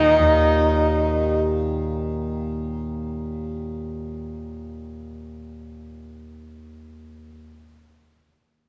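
Indian classical music in a meditative, longing mood, in which a smooth, gliding bowed sarangi with light vibrato and sympathetic strings sounds briefly up front for the first 1.4 seconds while a softly plucked, buzzing, shimmering tanpura drone carries on until 7.3 seconds, all set in a moderate recital hall reverb with a dark, warm production.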